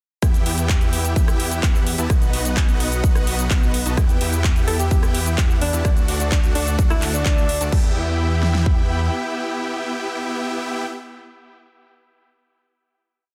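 A punchy, overdriven big-room dance kit leads this short festival progressive house piece, with a four-on-the-floor kick and a huge snare placed up front in a small room ambience. Metallic programmed hi-hats, handclaps, rim clicks, shaker and crash fill in the backbeat at a lower level. Sidechain pumping drives the layers underneath at 128 BPM in E minor. Bright, airy supersaw chords carry a dotted-rhythm riff in open voicing with tape echo, over a lush detuned pad in the background and a thick, saturated saw bass with chorus. At 4.7 seconds a mellow, distant alto saxophone enters with a jazz-style solo, its light vibrato and subtone trailing tape echo until 7.7 seconds. The drop then gives way to a final E minor chord, and the euphoric, emotional track sits in a dense, heavily limited modern master.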